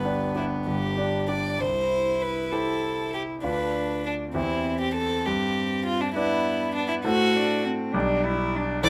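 A quick classical-period piano trio movement in 6/8, dramatic and urgent, where a rich, up-front violin carries the melody with light vibrato and an airy sul tasto tone, a pure, floating cello plays a soft-edged second line, and a clear, polished concert grand supplies the accompaniment with deep bass and audible action noise, all three sounding throughout this short fragment in a moderate studio reverb.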